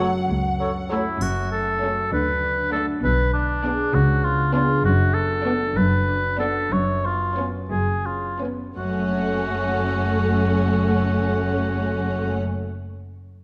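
A smooth-topped solo oboe sings up front in this quirky, magical film cue in a straight 6/8, over ringing fingerpicked harp arpeggios, lush bowed viola, cello and double bass sections with vibrato, and two distant, focused violin sections, one carrying a background melody and the other a second line, while a pure flute section, a roomy clarinet, a soft-attacked bassoon and a French horn section touch only the opening second, a dry triangle glints from 1.2 to 2.4 seconds, and the music slows from 3.9 s before settling back onto the minor home chord, all set in a dark, moderate scoring-stage reverb.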